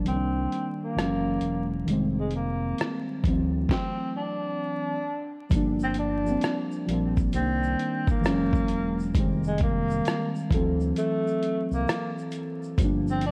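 Melancholic and nostalgic, this lo-fi hip hop excerpt sways at 66 BPM with a swung feel, as muted, felt-like synth keys with chorus and a low-pass filter lay out Cm7, Gbsus2, Fm9 and D7 over a smooth, gliding synth bass and a dusty, gritty sampler-style drum kit with a thumpy kick, medium-tuned snare, rim click and hi-hat. A breathy tenor saxophone carries the melody with vibrato, subtone and scooped notes, its distant, whispered tone softened by a low-pass filter and tape echo. A filter sweep colours the opening, the music stops between 3.7 and 5.5 seconds, and a grainy egg shaker slips in at 5.5 seconds, all under light reverb, vinyl crackle and the warbly pitch drift of worn cassette tape.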